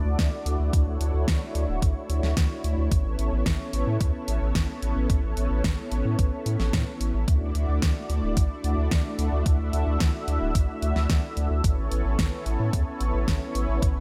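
An analog string pad and a round, deep analog bass open this romantic, dreamy synthwave excerpt in D major at 110 BPM in a straight 4/4. The pad holds silky, detuned sawtooth chords with a soft attack, ensemble chorus and vibrato, while the dark, up-front bass adds a filter pluck on its fast attack, and both parts carry a sidechain pumping. From 0.2 seconds an electronic kick drum with a thumpy, tape-warm, sampler-style character joins a layered pop drum kit of fat snare and hi-hat, the kit sitting lower in the mix than the kick. The harmony moves between Dadd9 and Aadd9, reaching Aadd9 at 2.9 seconds and returning to Dadd9 at 7.3 seconds. A light reverb surrounds the parts, and the passage feels lifted from a longer piece.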